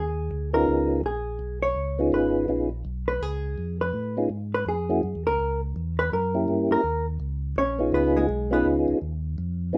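A soft, flute-like tonewheel organ carries the melody from 0.5 seconds, its clean tone marked by second harmonic percussion and shimmering with chorus vibrato and a slow rotary speaker. This bluesy, soulful jazz fragment, cut from a longer piece, swings at 165 BPM in 4/4 and sits in Db mixolydian. A dark, compressed hollow-body electric guitar, fingered and up front, comps through the changes before stopping at 8.7 seconds. Underneath, a second tonewheel organ holds down the bass line with a round, lightly overdriven sound, also colored by chorus vibrato and a slow rotary speaker. The harmony moves from Db7 to Gb7, passes through Gdim7 and settles back on Db7, all framed in a light reverb.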